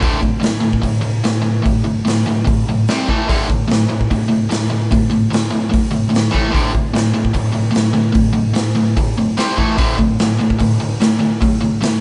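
A biting, overdriven electric guitar leads this swaggering, raw garage rock passage, its picked, double-tracked riff sitting up front and ranging from D2 to C4. The riff circles around D5, with brief touches of C5 and A5 before landing back on D5, and it runs from the start to 12.0 seconds at a straight 148 BPM in 4/4. An acoustic garage drum kit of hi-hat, kick and snare plays alongside it until 11.9 seconds, sounding saturated and gritty with a boomy kick, a medium-tuned snare and a rolled-off top. The kit carries a pumping, bright stone-room character and sits close in the mix. The band sounds like it is playing live together in one room with light reverb, and the recording's highs stop at 10.4 kHz. The clip is cut from a longer piece.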